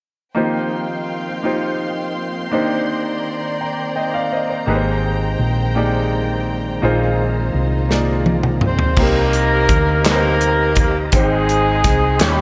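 A big arena sound with concert hall reverb frames this slow, reverent and hopeful gospel passage in Eb major at 56 BPM in 6/8, where a clear, intimate baby grand piano with audible action noise and slapback echo carries the accompaniment over a soft, flute-like tonewheel organ with a fast rotary speaker in the background and a studio string section bowing sul tasto; a round, dark hollow-body bass enters at 4.7 seconds, a punchy acoustic drum kit arrives with a fill at 7.9 seconds, and a mellow, distant horn section doubled in octaves takes the melody from 8.7 seconds before crisp group handclaps join in the background.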